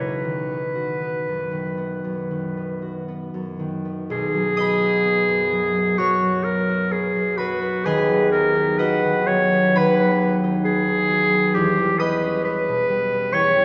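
Romantic classical music for clarinet and harp, this short excerpt unfolds in a warm, lyrical mood with a gently flexible rubato pulse. A vintage-toned clarinet sings the solo melody up front, while a bright concert harp, fingerpicked and ringing across a broad range, supports it from 0.0 to 13.6 seconds. Both sit close in a lush concert hall whose long, wet reverb adds a soft glow around the duo.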